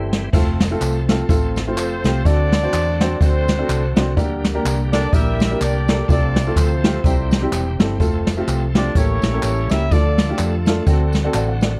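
Uptempo gospel at 125 BPM in F major, this hopeful, jubilant excerpt swings its eighth notes in 4/4 and is cut from a longer piece. A woody, vintage upright piano with short sustain opens with a brief fill and returns with another at 11.1 seconds. A round, hollow-body fingered electric bass sits up front beside a brushed jazz kit with dark cymbals, a medium-tuned snare and a boomy kick, heard in a roomy studio space. Tambourine, maracas and group handclaps add a live-room sparkle, while a bright, shouting tonewheel organ holds sustained chords in the background through a slow rotary speaker with light overdrive and key click. From 1.8 seconds a clear, punchy horn section carries the melody in tight octave doubling over a progression that moves from F through D7, Gm and an A7b9 before landing on D7. The overall sound is dry, with little reverb.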